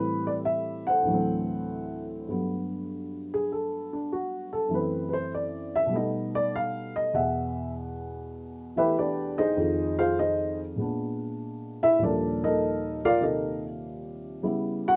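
A dark, woody upright piano, slightly detuned and up front with its action noise audible, plays swinging, playful solo jazz at 99 BPM in 4/4 with a light reverb, opening on Am7 and D9 before moving into a solo at 2.3 s that runs through rich chords such as Gmaj9, Em9 and Ebmaj9#11 in this passage cut from a longer piece.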